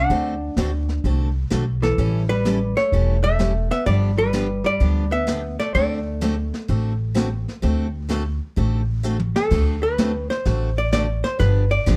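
An up-front, clean hollow-body archtop guitar carries the melody in this playful, down-home western swing excerpt at 128 BPM in D mixolydian, joined by a second, compressed archtop line that stops at 9.0 seconds, a woody, thumpy pizzicato upright bass, a bright, full-bodied picked dreadnought acoustic guitar in accompaniment, and a dark brushed drum kit with a boomy kick that plays a fill from 9.0 to 9.5 seconds, the whole set in light reverb.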